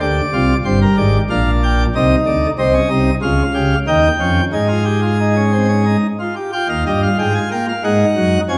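Set in a dark, reverberant recital hall, this brief cut from a longer baroque-style three-part fugue features a solo pipe organ on a full, brilliant plenum, its mixtures and chiffing attack sitting up front as it drives in triple time with serious intent before a new section arrives at 6.5 seconds.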